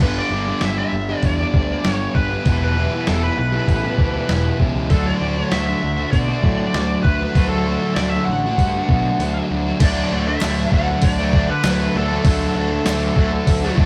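Played live in one room with moderate studio reverb, this brooding, driving classic rock cut at 98 BPM in a straight 4/4 sets a dark, distorted bluesy lead guitar melody over an overdriven, up-front sludgy guitar riff, a bright cranked stack guitar riff in the background and fuzzy, overdriven picked electric bass, while a muffled, pitched-down sampler-style drum kit thumps along through G, Em and D, and after a break at 9.2 seconds crisp group handclaps sit in the background from 10.4 to 13.0 seconds.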